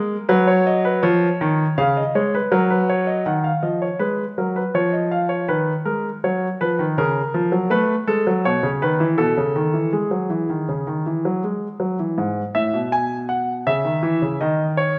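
Bathed in the generous reverb of a recital hall, a present, polished grand piano plays alone through this elegant, joyful baroque-style two-part invention in 3/4 at 81 BPM, its straight lines spanning G#2 to G#5 as the harmony moves from a Badd9/F# opening through minor-tinged chords, settles into E major from 7.7 s, and reaches a C#madd9 chord at 13.6 s before the clip, taken from a longer piece, breaks off at 15.0 s.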